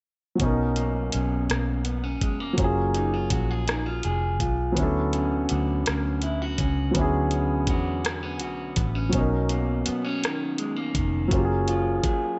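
A dark electric guitar, slightly broken-up, carries the second line in this tender, slow R&B piece, which is cut from a longer work and set in 6/8 at 55 BPM with a straight feel, tuned to A4 = 439 Hz. Alongside it, a warm grand piano plays the accompaniment, moving from Bmaj9 to Dmaj13 at 4.8 s. A vintage, foam-muted electric bass with a round, punchy, amped tone anchors the low end. A smooth, produced electronic drum kit supplies a knocking kick, metallic hi-hats and rim clicks, re-recorded in a small room. All four parts sit up front in a light reverb and digital ambience, and a new section at 9.1 s returns to Bmaj9 before shifting to F#maj9 at 11.3 s.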